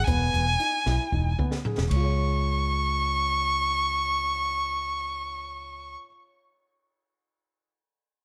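Bright and intricate, this brief progressive instrumental in 7/8 puts a rich, focused bowed violin melody with vibrato up front over a round fretless electric bass, while a mellow vintage baby grand piano spins smooth, long-sustained arpeggios and an open acoustic jazz kit with a boomy kick, high-tuned snare and dark cymbals plays a fill from 0.9 s before dropping out at 2.0 s, the whole set in a moderate echo-chamber reverb with small-room ambience.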